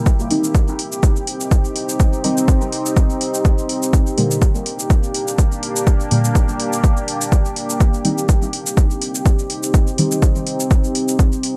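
Hazy and cavernous, this short dub techno fragment, cut from a longer piece, moves in a steady 4/4 with a gentle swing on the sixteenths. A deep, moody ambient pad built from detuned sawtooth unison and a sine sub octave fades in slowly and holds sustained chords throughout, its chorus and built-in reverb breathing with sidechain pumping. Over it, a soft, dark chord stab mixes triangle, sawtooth and wave-folded sine tones with a fast attack and decaying tail, colored by chorus, phaser, dub echo and its own pumping until it drops out at 10.2 seconds. A punchy, layered electronic kick sits up front, while analog shakers and metallic hi-hats tick quietly beneath, both re-recorded in a small room. The harmony moves from Cm to Gm at 3.9 seconds and back to Cm at 7.8 seconds, all within a lightly reverberant, echo-heavy mix.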